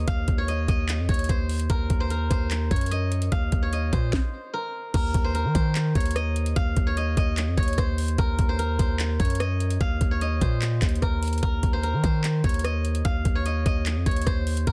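A dense, heavily limited and nearly dry mix carries this dark, menacing half-time trap cut, where a bright, silvery steel-string zither picked with fingerpicks rings through a low-pass filter over a heavy, distorted 808-style bass with a fast-attack, decaying tone and a trap kit of knocking kick, sharp snare, handclaps, rim clicks, crash and metallic hats, with a stop arriving at 4.1 seconds before the next section drops in at 4.9 seconds, moving between Ebsus2 and Ebm.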